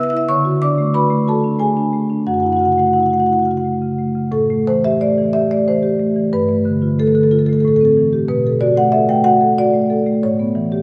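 Flowing and reflective, this fragment of a contemporary classical piece for solo marimba drifts in a lilting triple metre with a freely breathing rubato. The marimba, played with medium mallets, sits up front with a warm, airy tone and roams from F#2 up to E6, tuned slightly low at A4 = 437 Hz. Its harmony glides through seventh and ninth chords, opening on Dmaj7 and F#m7 before shifting at 4.3 s into a new section built on Am7, G9 and Bm7 that settles onto A9 near 10.2 s. A generous church reverb with a three-second tail surrounds the instrument, lending the notes a long, hallowed afterglow. The top end is gently rolled off, keeping the sound warm and rounded as the passage breaks off at 10.8 s, clearly cut from a longer work.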